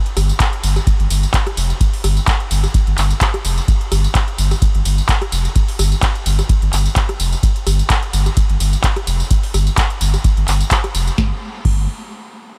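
A swung 128 BPM groove in 4/4 drives this short, hypnotic, raw acid house excerpt, cut from a longer piece and sitting in a drop from the very start until 11.2 seconds. A booming analog drum machine sits up front from 0.1 seconds, its crisp snare, metallic hats, handclaps, rim click, tambourine, ride and crash cymbals tape-warm, with a short room on the snare, clap and hats. A round sine sub bass, also up front, enters at 0.2 seconds and holds between F1 and G1 with a fast attack and sustained notes, pumping through sidechain compression. An electronic kick drum joins at 0.4 seconds, deep and analog with a tape-warmed weight. The whole mix rests in a digital ambience, and a brief new section arrives at 11.2 seconds before the clip ends.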